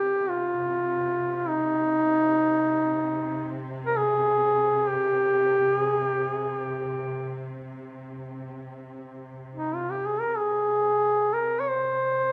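A smooth-topped, warm duduk sings a solemn, mournful Caucasian lament up front in free time, carried over a dark, softly attacked drone from a bowed cello section with expressive vibrato, all set in a moderate recital hall reverb with lossy compression artefacts in this 12.3-second cut from a longer piece.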